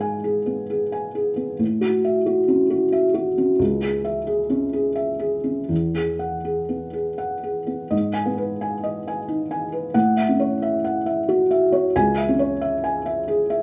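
A rubato piece in 3/4, drifting between 79 and 92 BPM, carries this wistful, intimate fragment of neoclassical minimalist piano in F# dorian, cut from a longer piece. A solo felt-muted upright piano plays from 0.0 to 13.6 s, ranging from C#2 to G#5, its thick felt giving a soft, dark, mellow tone with short sustain and audible action noise, placed up front. A moderate studio reverb surrounds the piano as it moves through G#m, F#m7/A, C#m and Eadd9, then begins the same phrase again at 7.9 s.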